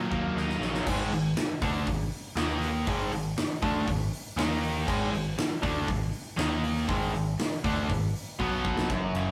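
A rough rehearsal-room sound with a moderate stone-room reverb frames this swaggering, brooding classic rock excerpt, cut from a longer piece and set in a straight 4/4 groove. Up front, a cranked stack guitar plays the riff with a bright, overdriven, double-tracked picked tone, cycling mostly between G#5 and D#5 power chords before landing on B5 near the end. Beneath it, a growling picked electric bass, direct and amped with its own overdriven grit, holds down the low end throughout. A huge arena drum kit, acoustic and roomy with a fat snare and punchy kick, sits up front using crash, hi-hat, ride, snare and kick. Drum fills mark the edges of the main section, one from 0.4 to 0.9 seconds and another from 8.4 to 8.9 seconds.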